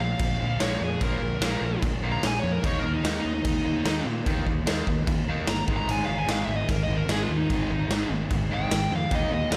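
Swaggering and anthemic, this hard rock excerpt centres on a dark, smooth lead guitar solo, overdriven and touched with slapback echo, over a cranked, bright stack guitar riff and a growly fuzz-fingered bass. A raw garage drum kit joins at 0.2 s with punchy kick, medium-tuned snare and crash cymbal, gritty and up front in a pumping stone room. The chords move from Bb5 to Eb5 at 2.6 s and Ab5 at 5.7 s, with the mix set in a lush hall reverb for a big arena sound.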